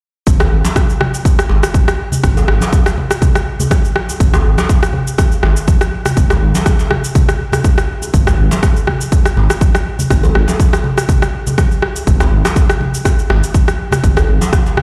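Earthy and spiritual, this afro house excerpt moves in 4/4 with a gentle swing on the sixteenths. A dark, detuned saw bass sits up front from 0.3 seconds, its deep, rumbling tone beating and saturated, and it pumps under sidechain compression. An electronic kick drum, punchy and layered with a tape-warm finish, drives beside it, while a produced electronic shaker and rim click fill out the groove. Close, bright congas with a thin skin enter at 0.4 seconds alongside a djembe that cracks tightly under soft hands yet sounds distant in a large room. The whole mix carries light reverb and small-room ambience, heard as if played on a big sound system in a bare stone room.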